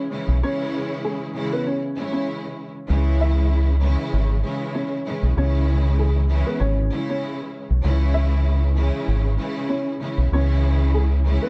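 Boom-bap hip-hop in C# minor sets a moody, reflective tone at 97 BPM, with a gentle 16th-note swing in 4/4 and tuning a touch below standard pitch. A mellow, woody upright piano carries the melody, its notes dark and short in sustain. Behind it, a lush bowed string section holds the accompaniment from a distant place in the mix, its expressive vibrato and sliding portamento giving the ensemble a studio sheen. A deep dub bass, fingered and amped, enters at 0.3 seconds and sits round and up front, far louder than the piano and strings. A break arrives at 0.4 seconds and runs to 2.9 seconds, all over a single C# minor chord. The production is dry and dark with a warm tint, and this short passage is cut from a longer piece.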